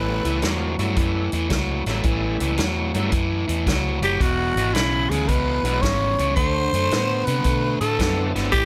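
Electric blues shuffle with a rollicking, swaggering swing, cut from a longer piece, where a biting overdriven guitar riff, a dark, round foam-muted fingered bass, a vintage acoustic drum kit with punchy kick and rolled-off top arriving at 0.2 seconds, and a bright tonewheel organ with key click, slow rotary speaker and chorus vibrato sitting in the background carry the A9, E9 and D9 changes, while an up-front, raspy, breathy tenor saxophone growls briefly at the start and takes its gritty vibrato solo from 4.0 seconds, all in a light reverb.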